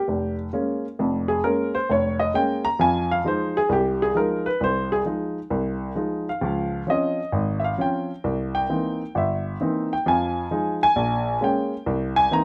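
A dark, mellow baby grand piano plays alone and up front for the full 12.4 seconds, a moody solo jazz passage in F minor that swings at 132 BPM in 4/4. Its short sustain and audible action noise give the playing a natural, intimate feel, set in a moderate club reverb. The harmony moves from Bbm7 through Fm7, Dbmaj7 and C7#9 before circling back, the clip ending on C7#9 as it is cut from a longer piece.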